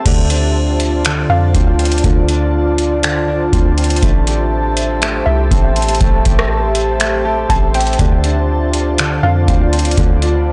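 A half-time 4/4 groove from a booming analog drum machine anchors this melancholic, ethereal cloud-rap excerpt. Its deep kick, metallic hi-hat, rim clicks, finger snaps and crash sound re-recorded in a large room, with soft clipping roughening the snare. Up front beside it, a soft 808-style bass gives round, sine-like low notes with a fast attack and quick decay. A concert harp opens the piece with ringing fingerpicked arpeggios trailed by digital delay, while a glassy FM pad holds slow-blooming Dm7 and Am7 chords through ensemble chorus, built-in reverb and sidechain pumping. In the background, a warbly, dusty lo-fi pluck, detuned and filter-swept with chorus and delay, appears briefly at 1.3 seconds and returns at 5.3 seconds for a longer line. The recording as a whole comes across blown-out and overdriven, with a muffled top end and light reverb.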